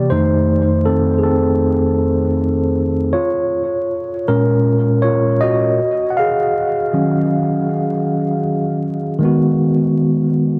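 A clean, up-front tine electric piano plays alone from the start, heard through its built-in speakers and colored by cassette tape, a low-pass filter and tape echo, drifting through F7, Bbm7, Ebm11 and Abm7 in a melancholic, reflective swung hip hop fragment whose dark production sits in a wet studio reverb beneath a layer of vinyl crackle.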